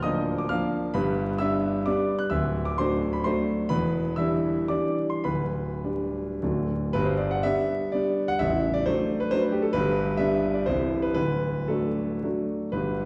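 A classical, romantic triple-time dance for solo grand piano, this short passage cut from a longer piece carries a proud, rustic character in G major. The tempo moves between 95 and 144 BPM in 3/4 with rubato, and dotted rhythms give the dance its lilt. The piano sounds smooth and vintage, sitting up front in the sound while spanning from A0 to G6. The harmony opens on Bb/D before settling into G, passing through D7, Em7 and G/D, then a second section from 6.9 seconds returns to G and touches Cmaj7 before closing on D at 11.2 seconds. The recording places the listener further back in a recital hall with a generous, wet reverb, and a layer of vinyl crackle adds an aged patina.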